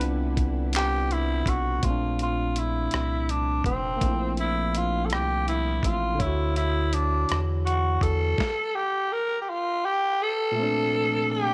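A growling, raspy tenor saxophone with slapback echo leads this sensual, tender slow six-eight R&B excerpt over a barky, bright tine electric piano, a rubbery, nasal square bass and a dusty, gritty sampler-style kit of thumpy kick, snare, rim click, hi-hat and handclaps, while a very quiet, lush bowed string section frames the passage at the start and returns at 10.6 seconds after the bass and drums fall away around 8.3 and 8.6 seconds, the harmony moving through Cmaj9, Bbmaj9 and Dmaj9 in light reverb.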